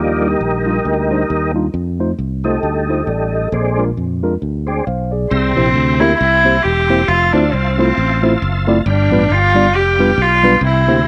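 This home cassette recording sits in a snug booth ambience with a short, close decay. It carries an uptempo gospel groove at 135 BPM in 4/4, with a swung eighth-note feel and a jubilant, hopeful mood. A mellow tine electric piano supplies clean, direct accompaniment, and a smooth tonewheel organ holds sustained chords through a slow rotary speaker and chorus vibrato, both bathed in plate reverb and tape coloring. The organ takes a solo over the opening 5.3 seconds as the chords move from Ebmaj7 through F7 to Bb7. A fingered electric bass anchors the low end with a dark, round, up-front tone. At 5.3 seconds a single bowed cello enters with the melody, played sul tasto with a soft attack and a pure, floating, warm sound, as the harmony shifts through C7, Fmaj7 and G7 before the fragment is cut off.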